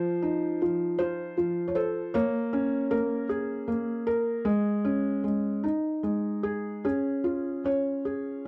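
A dark, warm recording with light reverb frames this gentle, innocent children's lullaby, a short fragment cut from a longer piece. A felt-muted upright piano plays solo throughout, its mellow, up-front tone carrying audible action noise and a vintage character. The piece sways in 6/8 with rubato phrasing and moves into a new section at 6.8 seconds.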